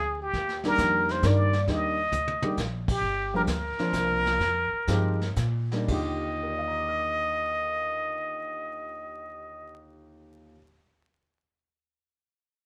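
A plunger-muted trumpet leads this short, sophisticated cut of small-group swing in 3/4 and Eb major, its bright, close-miked wah-wah tone sitting up front with light vibrato and scooped notes. A woody, thumpy pizzicato upright bass on gut strings and an intimate concert grand piano, whose action noise is audible, support it through chords moving from Ebmaj7 through Gm7, C9sus4, Fm9 and Bbsus4. Brushes on a vintage kit with a punchy kick and rolled-off top add a fill ahead of a band accent before the tempo slows from 3.0 seconds, and the drums drop out at 6.5 seconds, all under light reverb and vinyl crackle.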